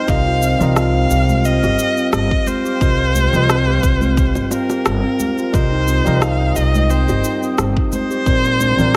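A clear, focused kamancheh carries the melody from the first moment, bowed by a single player with vibrato and portamento and touched with tape echo. Around it, a worn, slightly out-of-tune tine electric piano and a warbling, nostalgic tape-like pad with chorus and long release sit in the background. A round, ringing steel tongue drum plays airy arpeggios struck with firm rubber mallets. Almost at once a woody, growly pizzicato upright bass arrives up front with tube saturation, together with a deep, layered electronic kick and an electronic shaker and rim click. Soft-handed congas and bongos join quietly at 0.6 seconds. This hypnotic, warm organic downtempo fragment, lightly swung and pumping under sidechain, rests on Fsus2 before shifting to Bbadd9 at 8.3 seconds, just before the kick stops at 8.4 seconds.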